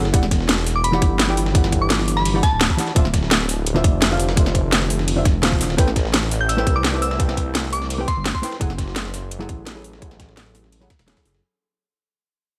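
This liquid drum and bass excerpt at 170 BPM feels dreamy and soulful, sitting in a drop that begins fading out from 5.8 seconds while the ninth chords drift from Em9 through Dm9 and Am9 to F#m9. Up front, a menacing, detuned saw bass with sustained, saturated notes and a filter swell anchors the low end, alongside a tight, overdriven electronic kick. A garage kit adds a cracking snare and metallic hats, layered over a gritty, compressed sampler-style kit that stays in the background with a medium-tuned snare. A dark, clean hollow-body jazz guitar plays fingered accompaniment through a digital delay. A glassy FM synth bell carries the melody in two short phrases, from 0.8 and 6.4 seconds, its crystalline, warbling tone shaped by chorus, tremolo and dub echo. The overall sound is dry, with little room reverb.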